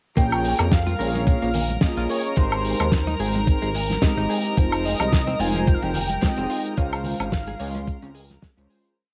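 Nu-disco with a cosmic, sleek mood at 109 BPM in Bb dorian, swung on the 16ths over Bbm7, Abmaj7, Fm7 and Dbmaj7. A thumpy, up-front electronic kick drives a four-on-the-floor pulse under a dry, damped 70s drum kit with a fat snare backbeat, hi-hat, cabasa and woodblock, plus very quiet maracas and congas. A glossy, chorused pulse-wave synth bass plays dotted rhythms beneath round, detuned synth brass chords and a bright, bowed chamber string section holding high notes with sidechain pumping. A clean, direct-recorded electric guitar repeats a 16-step riff in the background with analog chorus and 12-bit sampler grit. A thick, bold unison sawtooth lead with vibrato and tape echo states call-phrase motifs, and the whole home-cassette recording sits in light studio reverb before fading out from 6.0 to 9.0 seconds.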